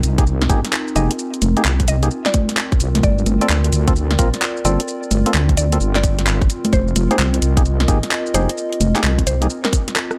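A moody, late-night two-step UK garage excerpt with swung sixteenths, built on a deep, saturated wobble bass and a dark, warbling lo-fi pad that both pump, anchored by a tight, tape-tinged electronic kick, while a garage kit of cracking snare, bright hi-hats, handclaps, rim clicks, shaker and congas sits up front, hollow organ stabs and a woody, round mallet-like pluck carry tape echo over shifting minor-eleventh chords, and the kick drops out at 10.0 seconds for a drum fill, all in a dry, gritty hardware sound with digital ambience.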